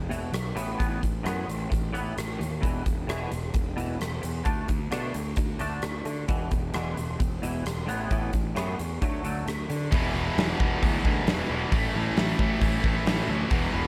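Dry, this anthemic, restless stretch of quiet-loud alternative rock opens with a twangy, compressed clean electric guitar picking arpeggios over a fuzzy, punchy overdriven electric bass and a huge arena drum kit, whose punchy kick and medium-tuned snare sit up front. At 9.9 seconds the twangy guitar stops and three guitars take over the riff in the background: a double-tracked distorted electric guitar, a bright overdriven electric guitar and a thick fuzz guitar. The chords move from E5 and Asus2 through D5 before landing on E and then A, heard as part of a longer piece.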